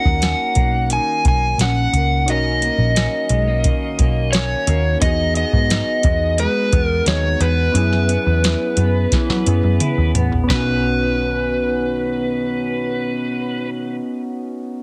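Heavy multiband compression gives this hazy recording a radio-like sound, set in a moderate studio reverb. It is sunny indie and bedroom pop in a straight 4/4, cut from a longer piece. Up front, an overdriven slide guitar carries the melody with a dark, fingered tone, touched by subtle chorus and tape echo. Beneath it, an electric guitar through a small old amp picks a bright, twangy, slightly broken-up accompaniment in lush chorus and warbly pitch drift, while soft electric-piano-like synth keys add round, mellow triangle and sine tones with a cassette-tape character. A vintage muted picked bass sits forward with a foam-muted, amped sound, and a vintage rhythm box supplies a dry, deep kick, crisp snare, metallic hats and toms, with a drum fill from 9.1 seconds before the drums stop at 10.7 seconds. The chords move from Bmaj9 through Emaj7 and F#7sus4, landing on Badd9 as a brief second section begins at 10.5 seconds.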